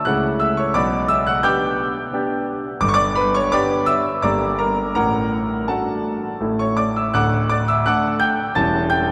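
A solo concert grand piano opens this short fragment of a classical-period sonatina, its clear tone set up front with a deep bass reaching down to D1 and an upper register climbing to A6. The mood is playful and graceful, moving in 3/4 at around 85 BPM in D major, with uneven beats and a rubato feel that lets the phrasing breathe. Harmonies pass from A/C# and G/B through a borrowed G minor at 4.2 seconds, then settle through D/A and A onto D at 7.1 seconds before a C#dim/E chord leaves the passage hanging. A cathedral reverb with a long 4.8-second decay surrounds the piano, giving it an open, spacious quality within a dark production. The excerpt lasts 9.1 seconds and breaks off mid-thought, as if lifted from a longer movement.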